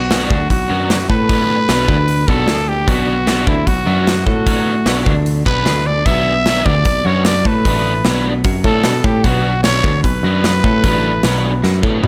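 A growling trumpet, a twelve-string electric guitar and a picked electric bass open this restless, cool stretch of indie rock, cut from a longer piece and held on a single B minor chord in a straight 4/4 pulse. The trumpet carries the melody up front, raspy and gritty with a light vibrato and a pop-style solo delivery. Behind it, the clean, bright twelve-string plays a compressed riff in the background while the foam-muted bass sounds growly and direct. A dark, overdriven second guitar joins at 0.1 s with its own biting riff, thickened by an ensemble chorus, as a big acoustic rock kit arrives alongside with a punchy kick, a medium-tuned snare, hi-hat and toms, sitting up front in a big room. Light reverb and small-room ambience frame the band, and a drum fill from 11.6 s closes the passage.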